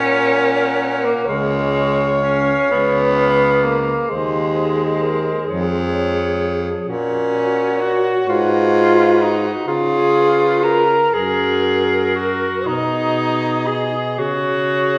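Tender and lyrical, this classical excerpt for single-reed quartet unfolds in F# major at a slow 35-44 BPM in a rubato 6/8. A clear clarinet carries the melody from the background while the three mellow saxophones fill in beneath it. The alto adds a smooth-topped second line with vibrato, the tenor's vibrato-tinged accompaniment and the baritone's bass sit up front. All four play together throughout the 15 seconds, heard from further back in a reverberant recital hall.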